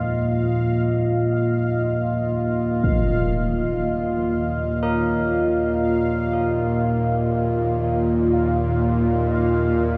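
Dark and cavernous, this free-time dark ambient drone excerpt rests on a nasal, sawtooth bowed-like drone that sits up front with vibrato under a filter sweep, joined by a deep, detuned analog pad with chorus on sustained Ebsus2 chords, a bubbling, resonant stepped-filter texture, very quiet bronze carillon bells ringing arpeggios, and a huge low-passed impact at 2.8 seconds, all steeped in a cathedral reverb.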